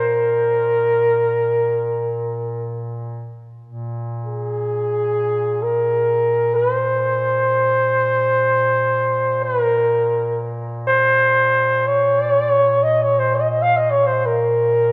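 A mellow flugelhorn and a duduk drone on a low Bb open this solemn, longing Caucasian lament, cut from a longer piece. The flugelhorn sits up front, carrying the melody in a classical style with light vibrato, while the warm duduk holds its roomy drone beneath in a folk style, its notes scooped and set quieter, both parts sounding distant. A moderate church reverb surrounds both, and the opening phrase returns at 3.6 seconds.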